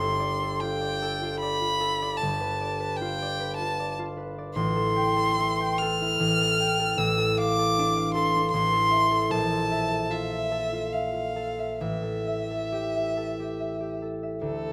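This classical, impressionist duo for violin and harp moves in a rubato 3/4 at roughly 65-79 BPM, tuned to A4 = 439 Hz, with a mysterious, hazy mood. A single bowed violin carries the melody within a range of A4 to F6 across the whole 14.7-second passage, its tone rich and focused, with vibrato and a smooth top end. Beneath it, the concert harp is fingerpicked through a span from G1 to G5, acoustic and ringing with a gentle warmth. Both instruments sit up front, captured by close, detailed microphones inside a moderate recital hall reverb of about 1.7 s. The harmony drifts from G9sus4 through Dm6/G, Am7, Dm/A and Fmaj7/A before settling on bare fifths, Bb5 and then A5, which leaves the cut-off passage suspended and unresolved.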